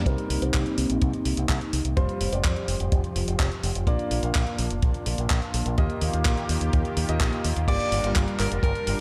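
Italo disco with a bittersweet, danceable mood, this cut from a longer piece rides a straight 4/4 feel. A lush, thick unison pad of detuned sawtooth voices with a noise layer and slow attack holds sustained chords, colored by chorus, phaser and shimmer reverb. A dark, mellow baby grand piano plays stabs through a low-pass filter, digital delay and shimmer reverb, and both the piano and the pad carry a filter sweep until 7.7 seconds. Underneath, a bright fingered electric bass with an envelope filter sounds direct and amped, while a clean 12-bit drum machine adds crash cymbal, handclaps and hi-hat with a sampler-style, tape-tinged character and gated reverb. A punchy, polished acoustic kick sits in the background with an airy hall quality, as the harmony moves through Cm7, Fsus2, Bb and Ebadd9 before landing on Gm7. At 7.7 seconds a bright, present alto saxophone enters with a vibrato-laden pop solo line, trailed by digital delay and shimmer reverb, all inside a light small-room ambience.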